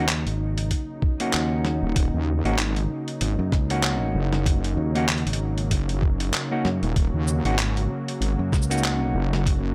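A heavy, saturated wobble bass with chorus enters up front at 1.8 seconds in this funky, swaggering glitch hop excerpt at 96 BPM with swung sixteenths in Eb minor, riding an Ebm7 chord over a growly overdriven fingered electric bass, a thumpy, pitched-down electronic kick arriving at 0.7 seconds, a compressed sampler-style boom bap kit of handclaps, hi-hat, shaker and medium-tuned snare (both drum parts bathed in studio reverb), dark, clean electric guitar stabs with dub echo and sidechain pumping, and a smooth, warbling analog pad holding sustained chords with chorus, vintage 12-bit sampler grit and pumping of its own.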